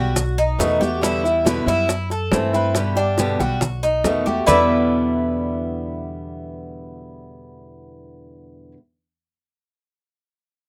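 A metallic, double-strung Cuban tres sits up front with picked arpeggios in this danceable, sultry slice of Cuban son and guajira in E minor at 139 BPM, joined by a warm, woody, picked steel-string acoustic guitar with old strings and a dark, thumpy gut-string upright bass played pizzicato. Round, low-tuned bongos with a compressed, saturated edge, damped high-tuned congas set in the background, and grainy, mellow maracas play until 4.6 s, after which the guitar, tres and bass carry on to about 8.8 s. The chords move through B7, Em7, F#m7b5 and G, and the rough home-demo mix carries light reverb.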